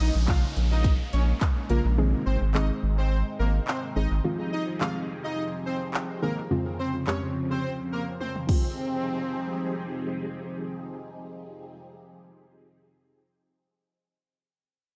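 Confident and energetic, this dance-pop excerpt moves at 106 BPM in a straight 4/4, set in F minor with the chords passing from Bbm7 through Ab, Fm7 and Dbmaj7/F before returning to Fm7. A smooth, detuned supersaw carries the melody through an analog delay, while a vintage string machine with cellos holds mellow sustained chords, coloured by phaser and ensemble chorus. A soft, round pluck with a warbling, dark edge supplies the accompaniment from 0.3 seconds, and a thick, saturated sub bass sits up front for the opening 4.2 seconds alongside an electronic downlifter. The layered pop drum kit brings a punchy kick, metallic hi-hats, handclaps, crash and toms, ending its run with a fill at 8.2 seconds. Sidechain pumping breathes through the supersaw, strings, pluck and bass, and light reverb with digital ambience gives the whole mix an echo-heavy sheen.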